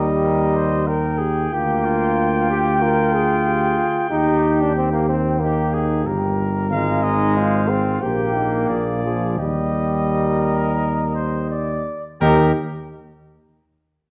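A mellow tuba sits up front with soft attacks, anchoring this stately, triumphant classical brass quintet passage cut from a longer piece. Above it a warm trumpet carries the melody with light vibrato, a clear, vintage-toned flugelhorn shapes a second line, and a soft-attacked trombone joins a French horn set in the background, both with smooth tops, in the accompaniment. The ensemble slows from 5.4 to 12.2 seconds, all heard through a wet recital hall reverb and worn cassette tape with a warbling pitch drift.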